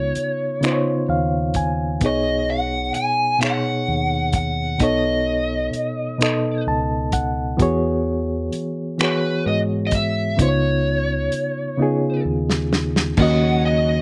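A close, dry sound with little reverb and hardly any sense of a room frames this tender, sensual slow R&B cut in six-eight at 43 BPM in B major, taken from a longer piece. An overdriven lead guitar through a small cranked amp carries the melody up front with a picked, gritty edge. Beside it, a reedy electric piano with fast tremolo and slapback echo plays the accompaniment, adding fills between 0.6 and 2.0 seconds and again later. Underneath sits a deep, round fingered electric bass, and a soul drum kit with dark cymbals, a tight kick, finger snaps and hi-hat enters at 0.2 seconds, closing with a fill before it stops at 13.4 seconds. The harmony moves through lush ninth and six-nine chords such as C#9, B69 and E69, and at 13.2 seconds a bright, shouting tonewheel organ with key click, chorus vibrato and slow rotary speaker slips in quietly in the background on a D#m7 chord.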